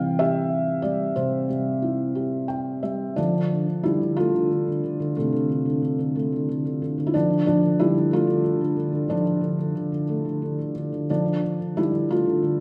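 In a 6/8 with a free, rubato feel, this brief classical fragment, cut from a longer piece, unfolds as a lyrical solo for felt-muted upright piano, dark and melancholic in mood. The piano sits up front with a soft, intimate, thickly felted tone and audible action noise, moving from a C chord through Dm7 to Dmadd9, with a short fill from 2.2 to 3.2 seconds leading into the second section at 3.2 seconds. A wet recital-hall reverb surrounds the playing, lending the close, mellow sound a sense of space.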